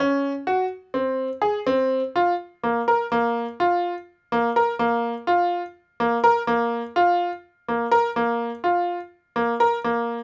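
Contemporary instrumental in a restless, playful 7/8 with a straight feel, this fragment of a longer piece is a concert grand piano playing solo, its brilliant, worn tone close and intimate with audible action noise and short sustain, set up front in light reverb, as a brief opening passage gives way at 2.4 seconds to a longer second passage that runs to 10.2 seconds.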